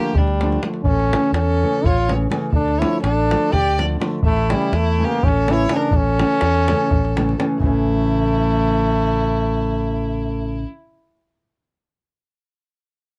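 A clear, up-front trombone carries the melody in this bittersweet, restless Balkan wedding-band fragment, which moves at 248 BPM in 7/8 in A major over chords shifting between Dm and A. A rich, bowed violin with vibrato adds a smooth second line, while a dark, full-bodied nylon-string guitar plays thumb-plucked accompaniment and a growly, amped fingered electric bass sits forward beneath them. A tight, vintage-sounding davul supplies percussion until it stops at 7.9 s, shortly after a new section begins at 7.6 s, and the sound is close and detailed with light reverb.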